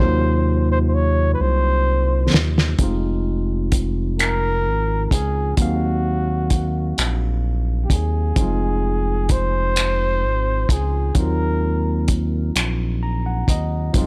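A breathy, whispered flugelhorn carries the melody in this late-night, sultry slow R&B piece in six-eight, cut from a longer piece. Its mellow, intimate tone and gentle vibrato are trailed by tape echo, and it plays until 12.2 seconds. Beneath it, a barky tine electric piano runs lightly overdriven through a combo amp, comping on chords that alternate between Ebm69 and Fm7 and adding a fill from 12.6 seconds. A smooth synth bass blends sawtooth and square tones with portamento glides, sitting dark and up front. The cloth-damped drum kit sounds muffled and lo-fi, with a fat snare, tight kick, hi-hat and finger snaps, and it opens with a fill that runs until 2.8 seconds. A small room reverb and the kit's gritty, rolled-off saturation give the track a close, hazy feel.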